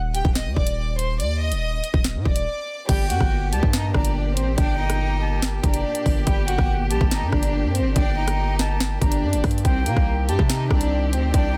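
A hard-clipped kick, a sharp, soft-clipped snare and bright hats drive the up-front drill drum kit in this dark, ominous half-time drill excerpt at 142 BPM in G harmonic minor. The kit plays alongside a punchy, saturated 808-style bass and an intimate sul tasto violin section carrying the melody, with a brief break at 2.5 s before a reedy flute line with digital delay and veiled, con sordino strings holding sustained chords enter at 2.9 s. The harmony moves from Gm to Cm at 9.6 s in a dense, heavily limited mix with small room ambience.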